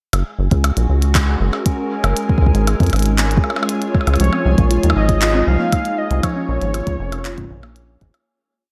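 Glitchy and playful, this short IDM piece sets a soft, broken electronic kick and a clicky, ever-changing kit of closed hats, claps and high bongo blips, bathed in diffuse ambient delay, under a rubbery, saturated acid bass riff that sits up front. A glassy FM pad with ensemble chorus and 12-bit sampler grit holds slowly shifting chords, while a bubbling stepped-filter texture sustains a high note in the background. At 4.2 seconds a velvety synth lead with vibrato traces a free melody and a warbly, dusty pluck repeats a 16-step sequence through tape echo, as the dreamy, reverb-soaked mix fades out from 5.6 seconds.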